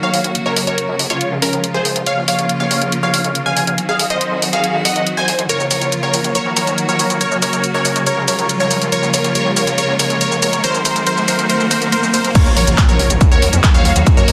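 A dense, heavily limited mix with a moderate digital room sheen carries this euphoric, emotional uplifting trance excerpt in Bb minor at 140 BPM, where a punchy, detuned supersaw stab leads up front through phaser, cassette tape and dub echo, shadowed by a lush, decaying unison pluck. Beneath them a bright, biting studio string section holds bowed chords with vibrato, while a gritty, nasal synth bass sits in the background, and an overdriven techno kit of crash, handclaps, hi-hat and shaker drives the build-up with sidechain pumping. A riser from 3.2 seconds and a swell lead into the drop at 12.4 seconds, where an impact lands and a distorted electronic kick enters up front.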